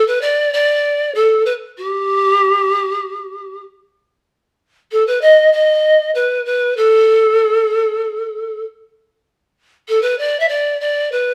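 A lone pan flute opens this short excerpt of Andean folk, playing solo from 0.0 to 11.3 seconds at 96 BPM in straight 4/4, with a mood that is at once wistful and festive. Its breathy, woody tone has a soft attack and gentle vibrato, sitting up front while ranging from G4 to E5. A wet studio reverb and the sound of a live room give the polished flute a sense of space.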